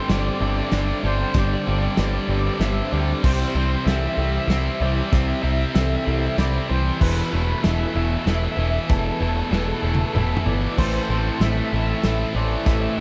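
A loose indie drum kit with punchy kick and dark cymbals sets a straight 3/4 pulse at 95 BPM beneath a growling, overdriven picked bass that sits up front, and the kit plays a fill from 9.5 to 10.8 seconds in this melancholic, cinematic post-rock passage moving through Gsus4, C, Esus4 and Am. A slightly broken-up guitar through a small old amp carries the melody with lush chorus and tape echo, while a tight distorted guitar plays a bright riff, a twangy clean guitar picks arpeggios with warbly pitch drift and tape echo in the background, a faint lo-fi small-amp guitar adds high arpeggios, and a dark, very quiet string section holds soft-edged sul tasto chords. A second bright, compressed distorted guitar riff enters at 10.8 seconds, and the whole dreamy mix is soaked in a lush hall reverb.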